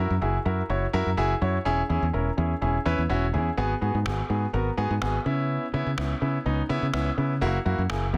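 Dance-pop at 125 BPM in a straight 4/4, this short excerpt cut from a longer piece feels confident and energetic. A clear concert grand piano carries the accompaniment from the start, intimate and polished, with audible action noise, deep low end and long sustain sitting up front. Beside it, a fingered electric bass plays throughout, punchy and direct with a foam-muted, warm tone that also sits close to the listener. Electronic finger snaps enter at 4.1 seconds, sampler-style and pitched down, with a compressed, muffled character from being re-recorded in a large room and soft clipping on the snare. The harmony moves through F#7, E6, G#m7 and C#m7 before returning to F#7, all held in light reverb and a dense, heavily limited modern master.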